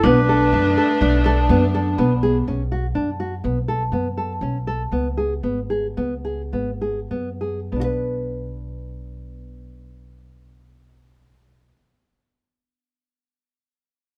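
This excerpt of restless, urgent contemporary chamber music in 5/4 and B dorian opens with a breathy, scooped-note clarinet melody in a jazz style. Beneath it sit a dark, ringing vibraphone second line, soft bowed chamber strings, a deep frame drum kept very quiet, and pizzicato upright bass. The clarinet, vibraphone, strings and drum fall away by about 2.4 s, leaving thumb-plucked classical nylon-string guitar arpeggios and the woody bass up front through Bm7, B7 with its third omitted, C#5 and Bm, while the tempo, ranging from 95 to 124 BPM, slows from 3.4 to 7.7 s and the close, dry miking brings out fine detail.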